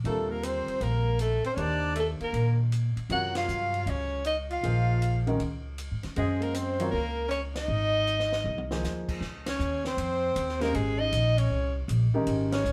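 Spiritual and open, this swinging modal jazz excerpt sets a mellow, lightly vibratoed soprano saxophone with scooped notes at the front, joined by a clear, close-miked tenor saxophone on a second line. A woody, growly pizzicato upright bass sits up front beside a warm grand piano's chords, while a compact cocktail drum kit with dark cymbals, a high-tuned snare and a tight kick plays a fill from 8.1 to 8.8 seconds. The band hits accents together, the harmony settles into a new section at 9.2 seconds, and a wet studio reverb gives the room some depth.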